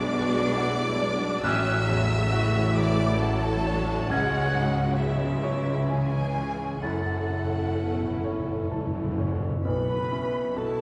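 Set back in a wet scoring-stage reverb, this moving, longing cinematic film cue drifts in rubato 3/4 at 63-69 BPM: a lush, expressive violin section sings the melody over a focused second violin line, against a background of warm piano, portamento violas, sustained French horn chords and smooth cello and double bass sections, while a hollow flute and a very quiet, bright clarinet join at 1.4 seconds and close, dry timpani come up front with a fill from 6.8 seconds.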